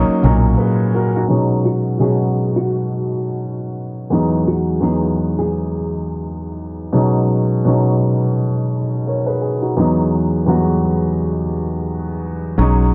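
A dark upright piano carries this short lo-fi hip hop clip from start to finish, its mellow, woody tone given a vintage cassette-tape grain as it moves through Bmaj7, B6 and Emaj9 chords in B major. The mood is nostalgic and cosy, set at 85 BPM in 4/4 with a gentle 16th-note swing. A small, thumb-plucked nylon-string guitar carries a brief melody from 1.7 to 6.4 seconds, sitting softly behind the piano with a tape echo trailing each note. A deep dub fingered electric bass appears only in short bursts at the very start and again near 12.6 seconds, sounding round, punchy and foam-muted, placed up front with a direct, amped character. The whole recording has a worn, warbling old-tape quality, with pitch drift, a low-pass filter and a moderate studio reverb that softens the edges.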